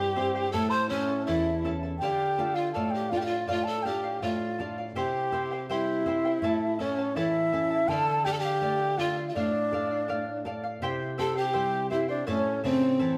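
A straight 2/4 pulse at 82 BPM carries this melancholic, earthy Andean folk excerpt in D minor, cycling through C, A and D minor chords in a repeated phrase that begins again at 5.0 seconds. A mellow wooden quena sings the melody with airy vibrato and tongued notes, joined by a breathy, bright bamboo pan flute on a reedy, up-front second line with audible chiff. Beneath them, a shimmering fingerpicked charango with double strings and a full-bodied, forward nylon-string guitar fill in the accompaniment, the group playing live together in a wet stone room.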